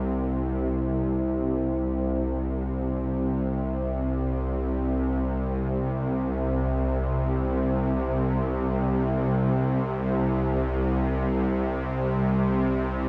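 Floating in free time, this dark, cavernous ambient passage, cut from a longer piece and tuned to A4 = 439 Hz, rests entirely on a solo bowed-like drone that sounds from 0.0 to 13.1 s between C2 and C3. The drone is string-like and tense, with a bright, sawtooth edge, a ring-modulated bite, a noise layer and vibrato, and it sits up front with a slow attack, sustained body and long release. A huge, wet reverb with a 7.5 s decay surrounds it.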